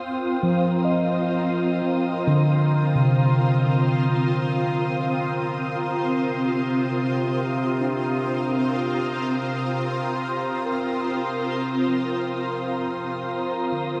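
A shimmering pad of sustained Cm9 chords opens this serene, melancholic ambient fragment beside a breathy, wind-like texture that fades in high above, joined at 0.4 seconds by clean tine electric piano arpeggios with phaser and delay that gradually fade out, while a warbling, string-like bowed drone with vibrato hums low from 6.4 to 12.6 seconds, all set in a dark production bathed in a long, wet shimmer reverb.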